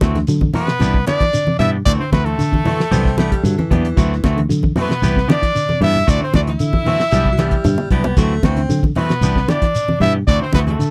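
Opening on twangy electric guitar stabs, a round foam-muted fingered bass, a damped 70s drum kit with fat snare and tight kick, low-tuned congas and a grainy shekere, this hypnotic, joyful afrobeat groove at 114 BPM in D mixolydian rocks between D9 and Cmaj9 as a clean semi-hollow guitar adds background arpeggios, a clear, punchy trumpet leads up front with vibrato over a raspy tenor saxophone second line, a baritone saxophone with scooped notes joins from 2.9 to 8.8 seconds, and a drum fill at 7.4 seconds marks this dry, close 1970s-style studio excerpt.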